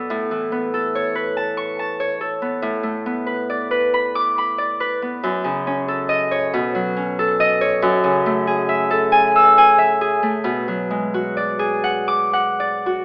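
Rubato carries this slow 6/8 solo harp piece on uneven beats, giving a gentle, mysterious classical mood that settles into a minor key from 5.3 seconds, with chords moving from Aadd9 through Bm7/A, F#m6, B9 and F#m9 to Bm6. The Celtic harp plays alone and up front for the full 13 seconds, fingerpicked and ringing with a warm acoustic tone across a range from F#2 to E6. A wet recital hall reverb surrounds it, while an AM radio sound colours the whole excerpt, which is cut from a longer piece.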